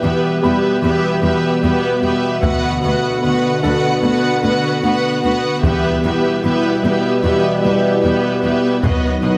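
An excerpt of a brooding, futuristic hybrid orchestral and electronic film score in E minor at 75 BPM opens with lush bowed strings, a warm violin second line, up-front rich violas and close cellos on the bass, over clear trombone chords, a hollow, airy chorused pad and a dark, tine-like synth pluck arpeggiating quietly, while a felt-muted upright piano adds an intimate, very quiet texture from 0.4 seconds, close hard-stick taiko drums enter at 2.4 seconds, and a moderate scoring-stage reverb surrounds the parts as the chords move from Em through Bm/D to a closing B.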